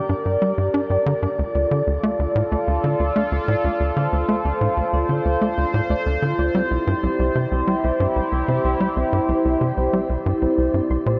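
A sweeping, resonant pad opens this cosmic, expansive piece of sequencer-driven space music, holding evolving, detuned chords up front with chorus and a shimmer reverb that drifts through Gm, Dm and then C at 6.5 seconds. Almost at once a tight, punchy sequencer bass drives a riff beneath it, its mellow filter-plucked tone carried on tape echo and sitting just as far forward as the pad. A soft, round pluck traces arpeggios across a broad register at a very low level, gentle and mellow with its own chorus. From 0.3 seconds a breathy, wind-like tuned noise texture hovers high and dark, barely audible behind the other parts. The straight 4/4 pulse is bathed in a wet plate reverb and an echo-heavy mix, and this brief cut from a longer piece stops at 11.2 seconds.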